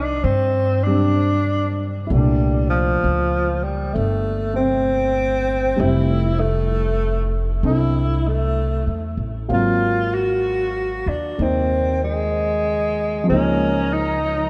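Jazz ballad at a slow, swung 64 BPM in 4/4, wistful and smoky, with a breathy tenor saxophone carrying the melody up front in a whispered subtone, with vibrato, soft attacks, scooped notes and a diffuse ambient delay. A warm baby grand piano with short sustain supplies the accompaniment, while a pizzicato upright bass sits up front with a woody, growly, thumpy tone over chords moving from Cm11 through Fmaj7 and Ab13. At 13.3 s a dark, lush bowed string section enters on a Db69 chord, and the whole excerpt is soaked in a dreamy plate reverb.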